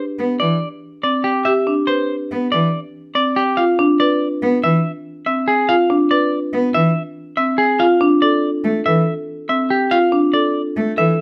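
In a straight 5/4 at 142 BPM, this hypnotic, bright piece of minimalist classical pattern music sets a clean, picked semi-hollow electric guitar melody over woody, airy marimba arpeggios struck with medium mallets and a rich, focused bowed cello with vibrato, all in a moderate studio reverb as the harmony moves from Em7 to E7(omit3) at 3.6 seconds and Dmadd9 at 7.8 seconds in this short cut from a longer work.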